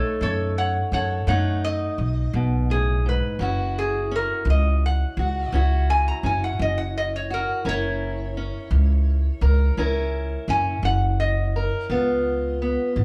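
This rolling 12/8 groove moves at an unhurried, straight swing-free pace, giving a rollicking yet soulful piece of acoustic country blues cut from a longer performance. A metallic, nasal resonator slide guitar, played with fingerpicks, sits up front carrying the melody, while a dark, boxy parlour acoustic guitar fingerpicks the accompaniment and a woody, thumpy upright bass on gut strings plucks the low end from 0.2 seconds. The trio plays live in one room, wrapped in a moderate large-studio reverb as the chords move from B7 to F#7 and touch C#7 near the close.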